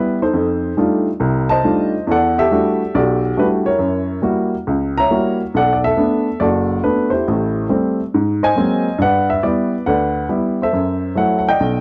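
A dry, close recording in a small room with a 1970s studio character places a woody, intimate upright piano up front, its action noise audible beneath the notes. In this sophisticated, warm solo jazz passage, swung eighths in 4/4 carry the piano from F#1 to A#5 through rich chords such as F13, F#7b9, Ab9 and G6 before it settles on F#m7b5. Cut from a longer piece, the piano plays alone for the full 11.8 seconds.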